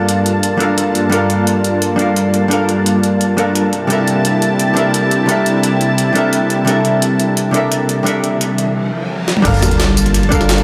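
A dark, clean hollow-body jazz guitar with tape echo and a lush, detuned unison pad pumping with chorus open this lush, rolling liquid drum and bass passage, soon joined by a gritty, pitched-up jungle sampler kit with a high-tuned snare, before a background riser leads to a drop at 9.4 seconds where a round sine sub bass, a tight layered kick and faint bongos arrive, all bathed in dreamy cathedral reverb.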